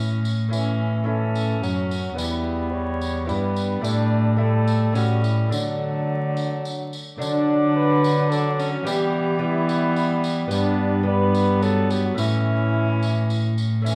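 A dark, reedy gut-string cello sits up front, carrying the bass line of this stately, festive renaissance-style consort dance in triple time. Above it, a distant, roomy cornet sings the melody with light vibrato, while a bowed viola adds a second line. A clear bassoon and a delicate, fingerpicked double-strung lute in the background fill out the accompaniment, with a jingly tambourine entering at 0.2 seconds. The excerpt sits in a reverberant recital hall with a dark production and a touch of vinyl crackle.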